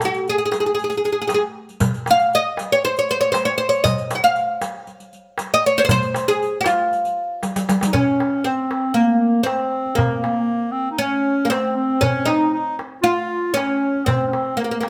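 Light reverb gives this festive cut from a longer Arabic maqam piece the sound of a band playing live in one room, moving at 118 BPM in a straight 4/4 in F maqam saba. A bright, woody, plectrum-plucked fretless oud with double strings leads up front and sits loudest in the mix, backed by a crisp metal-shell darbuka played with soft hands and a close, dry riq with dark jingles struck with hard hands. After a drum fill at 7.4 seconds, the riq drops out at 7.9 seconds and a clear, classical-style clarinet enters up front with a solo second line in its lower register.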